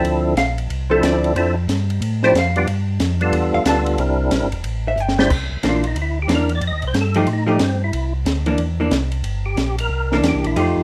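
Soulful and greasy, this fast soul jazz organ trio excerpt swings at 183 BPM in C mixolydian, moving through Dm7, G9 and C9 before turning to F9 and back. A vintage hollow-body jazz guitar, dark, clean, picked and compressed, takes the first solo, with a short drum fill at 5.0 seconds handing off to the organ. From 5.3 seconds the percussive tonewheel organ solos with a fat, up-front voice, its third-harmonic percussion and key click cutting through a chorus vibrato and slow rotary speaker. Underneath, a second tonewheel organ carries the bass in a round, mellow register, also turning slowly through its rotary speaker. A compact cocktail drum kit keeps time on ride, hi-hat, crash, a punchy kick and a high-tuned snare, its small-room sound smooth with a rolled-off top. A moderate studio reverb gives the trio a modest room around it.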